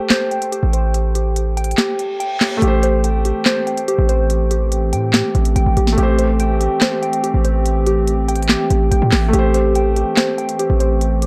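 Menacing and melancholic, this short trap cut from a longer hip hop piece sits in A minor at 143 BPM with a half-time feel, resting on a single Am7 chord under a dark, warm production with light reverb. A soft, felt-muted upright piano with audible action noise plays intimate accompaniment from the opening, joined by warbling lo-fi synth keys whose detuned, wave-folded arpeggios are coloured by chorus and tape echo. The overdriven trap drum kit comes in at 0.1 seconds with a sharp snare, crisp hats and handclaps, sounding electronic yet re-recorded in a small room and placed up front. A punchy, heavy 808-style bass with a fast attack and a noise layer hits from 0.6 seconds. The kick briefly drops out from 1.8 seconds as a reverse cymbal leads into the new section at 2.6 seconds. From 3.2 seconds a mellow, tape-like pad with a slow attack and long release spreads sustained chords through the mix, deepening the nostalgic haze.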